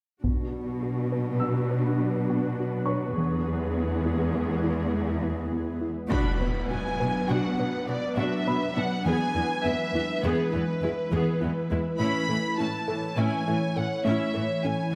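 A brooding, vast hybrid orchestral and electronic film score cue in 5/4, where lush cellos anchor the bass and expressive violas with portamento move beneath an ethereal, detuned pad and a woody wave-folded pluck arpeggiating through delay, while taiko with hard sticks strikes only until 1.4 s, a dark, mellow grand piano adds background texture, and at 6.1 s smooth violins take the melody as a huge background impact lands, all bathed in a wet recital hall reverb.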